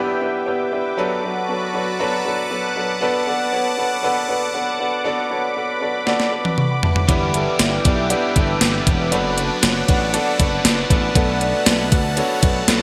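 1980s-style pop with an uplifting, nostalgic mood, moving at 118 BPM in a straight 4/4, cut from a longer piece. It opens with a polished, up-front baby grand piano laying down accompaniment over a sweeping, airy pad of detuned sawtooth chords with a noise layer, a slow attack and chorus, cycling through G6, D6/F# and Bm7. A sampler-style drum machine breaks in with a fill at 6.1 seconds, its thumpy kick, medium-tuned snare, hi-hat, tambourine and toms pushed up front with overdrive and gated reverb. At 7.1 seconds the band fills out: a punchy slap bass, a biting overdriven guitar with analog chorus, and a compressed, clean guitar riff soaked in lush chorus and delay, both guitars sitting in the background. The whole mix is bright and digital in the 1980s manner, bathed in a lush hall reverb.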